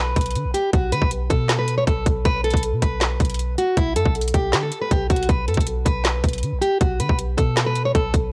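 A fingerpicked, plugged-in steel-string acoustic guitar opens the track up front, its low-pass-filtered melody sitting in B minor over a deep, boomy, sine-like 808 bass with a dark, decaying tone. At 0.2 seconds a trap kit enters with a hard-clipped kick, woody snare, handclaps and metallic hi-hats, setting a menacing, brooding half-time feel at 158 BPM as the harmony shifts from Bm to B5, drops out entirely at 3.8 seconds, and returns on a B7 chord with its third omitted. The excerpt has a dry, gritty hardware sound with transformer saturation and cassette tape grit.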